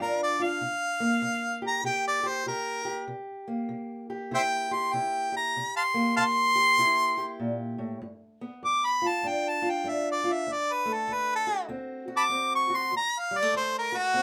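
Acoustic country blues with a laid-back, gritty mood, moving at 98 BPM in 4/4 with a swung eighth-note feel, taken from a longer piece. A clear harmonica sits up front and carries a jazz-style solo across the full 14.2 seconds, with light vibrato and tongue slaps, while a boxy parlour steel-string acoustic guitar fingerpicks the accompaniment beneath it at a lower level. The harmony moves from G7 to C7, back to G7 at 8.0 seconds and on to D7 at 10.5 seconds, all set in a moderate small-room reverb.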